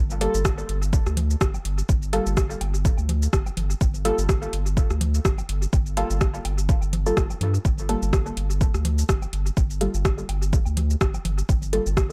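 A round, dark analog bass opens this hazy, nocturnal dub techno excerpt in G minor at 125 BPM, pumping against an overdriven, up-front electronic kick that arrives at 0.5 seconds, joining a deep house kit of metallic hi-hats, rim clicks and shaker soaked in dub echo that enters just after the bass. Muted sawtooth chord stabs on a Gm9 pluck and decay through chorus, phaser and echo under a continuous filter sweep, while overdriven congas and woodblock sit in the background from 1.2 seconds. The swung, echo-heavy mix lives in a digital ambience throughout.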